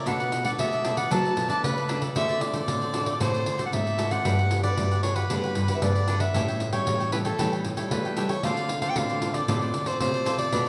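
Joyful and lively, this samba and choro piece moves at 115 BPM in a straight 4/4, with a breathy, clear soprano saxophone carrying the jazz-style solo melody up front with vibrato over chords moving from Bm7 through D7, Gmaj7 and A7 to Dm7. A bright, crisply picked cavaquinho and a fingerpicked nylon-string guitar sitting in the background fill out the accompaniment. A second nylon-string guitar supplies a deep, full-bodied bass line with audible finger squeak, while a jingly pandeiro sits up front, all captured as a band playing live in one room with a wet large-studio reverb.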